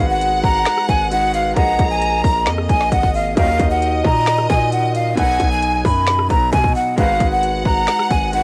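A half-time trap groove at 133 BPM in 4/4 drives this melancholic, eerie hip hop excerpt, with the trap drum kit entering at 0.2 seconds: a hard-clipped kick, woody snare, crisp hats, rim clicks and finger snaps, all roughened by 12-bit sampler grit and cassette tape. Beneath it, a distorted 808-style bass hits heavy and aggressive, its saturated sine tone carrying a noise layer with a fast attack that decays. Up front, a breathy jazz flute carries the melody with expressive vibrato, a soft attack and lifted highs, while a clear studio violin section plays a smooth, even second line through cassette tape and tape echo. In the background, a bright concert grand piano supplies polished accompaniment with deep bass and long sustain, and a glassy, ethereal glass harmonica holds slow-attack chords in a boxy small room. A dark brass ensemble adds tight, vintage stabs at 3.4 and 7.0 seconds as the chords move from Abm7 through Bb7sus4, Ebm and B back to Abm7, all set in light reverb with the hazy character of a home cassette recording.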